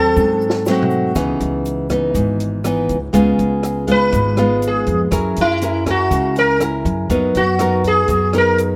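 Bossa nova at 121 BPM in a straight 4/4, this short cut from a longer piece has a melancholic, smooth mood. A sitar carries the melody as a solo from the opening, its plectrum-plucked tone buzzing and shimmering with sympathetic strings, round and placed up front. Beside it, a bright, fingerpicked nylon-string guitar supplies classical-style accompaniment, equally forward in the mix, with audible finger squeak. Beneath them, a woody, growly pizzicato upright bass on steel strings adds a thumpy low end. A compact cocktail drum kit, dry and natural with a high-tuned snare and punchy kick, opens with a fill from 0.2 to 1.2 seconds, while a grainy egg shaker sits very quietly, close and dry. Light reverb surrounds the ensemble as the harmony moves from Ab7b9 through C#m9, C#7 and F#7 to Bmaj7/F#.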